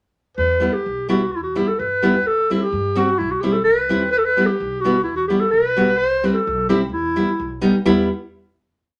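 This short klezmer piece sits in a wet studio room with a brief reverb tail, giving its trio a close yet softly blooming sound. Set in E harmonic minor at 128 BPM in a straight 2/4, it feels festive and soulful. A warm clarinet carries the modal, ornamented melody up front from 0.4 seconds, its subtone and vibrato lending a jazz-tinged, soft-edged voice. Beside it, a fingerpicked nylon-string guitar in classical style plays off-beat triad chords, equally forward, while the upright bass sits lower in the mix with a woody, thumpy pizzicato quarter-note figure. The harmony moves between Em and C before the piece settles on a final chord at 7.9 seconds.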